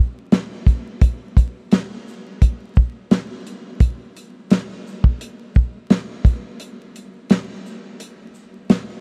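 Vinyl crackle and a light reverb give this short hip hop clip a gritty, moody surface. A soul drum kit carries the whole piece, entering at 0.3 s and playing until 8.9 s, with hi-hat, kick drum, shaker and snare drum. The kit sounds acoustic, dry and dark, with a rolled-off top that keeps it smooth. A fat snare and a tight kick sit up front. The groove swings its sixteenths in 4/4, and a break arrives at 6.6 s before the cut ends the passage from a longer piece.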